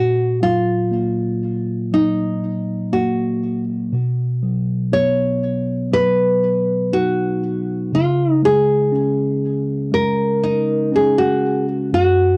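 A homey cassette recording with light reverb gives this tender, heartfelt pop fragment a soft, intimate glow at a straight 60 BPM in 4/4. Up front, a full-bodied, fingerpicked nylon-string guitar with a deep classical tone carries the melody, while a mellow, clean tine electric piano sits close and direct underneath as accompaniment. Both play from start to finish over a D#m/A#, Badd9 and C#5 progression.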